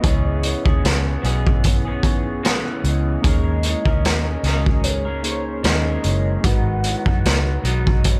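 Mellow and lonely, this swung bedroom-pop passage from a longer indie pop piece sets a gritty, up-front garage drum kit and a dark, foam-muted fingered bass under a slightly broken-up guitar through a small old amp with analog chorus and pitch drift, round electric-piano-like synth keys with chorus and cassette tape coloring, a detuned, warbling lead that carries the melody from the background with chorus and tape echo, and a ringing soft-mallet vibraphone that enters at 0.4 s with lush chorus and tape echo, moving through C#m7, D#7sus4 and G#m7.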